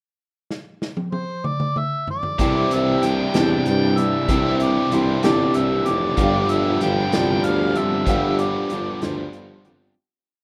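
A straight 6/8 pulse at 63 BPM opens this hopeful, open-road folk and heartland rock piece in C major with a dark, rolled-off vintage drum kit fill and a gritty, overdriven harmonica entering at 1.1 seconds with vibrato-laden song phrases, before a full-bodied picked acoustic guitar strumming open chords, a biting double-tracked electric guitar ringing up front, and a mellow, soft-attacked tuba driving eighth-note bass all join at 2.4 seconds over Cadd9 moving to G7sus4, the small-room home-demo sound fading out from 8.1 seconds.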